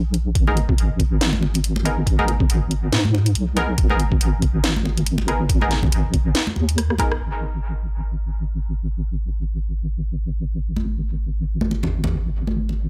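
A deep, mellow wobble bass of square and sine tones anchors this heavy, dark deep dubstep excerpt at 140 BPM in half-time G# minor, joined in a dry, gritty mix by a thumpy overdriven kick, a tape-toned garage kit with cracking snare, hi-hat and rim click, muted sawtooth chord stabs on G#madd9 trailing dub echo, and hard-handed congas, until a drum fill at 6.8 seconds leaves the bass alone at 7.2 seconds before the congas return at 10.8 seconds.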